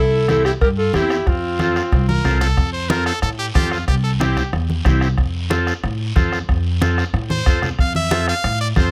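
Dry, close 1970s-style studio sound in a small room frames this festive, joyful cumbia excerpt at 184 BPM in F major, where a breathy, whispered alto saxophone carries the melody until 2.3 seconds beside a brilliant, punchy trumpet second line that takes a solo from 2.6 seconds, all over woody pizzicato upright bass, buzzy vintage combo organ, soft-beater bombo, low-tuned congas and a raspy, distant guiro, with drum fills arriving at 2.1 and 7.3 seconds.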